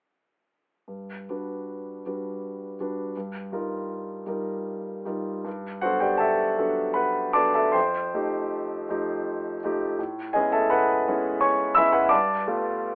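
A clear grand piano carries this serene, hazy fragment of a classical, impressionist solo piece, playing alone from 0.9 seconds to 12.9 seconds. The tone is intimate and natural, sitting up front with audible action noise, and it spans a range from F2 to E6. Moving in 3/4 with a free, rubato feel at roughly 71-86 BPM, the music drifts through lush extended harmonies, opening on Gmaj7 before sliding to Ebadd9/G. A second passage begins at 5.5 seconds, moving from Gmaj9 through F9 and Amaj9 to settle on G9. Light reverb surrounds the instrument, while a narrow telephone-like filter over the whole recording gives it a distant, dreamlike cast.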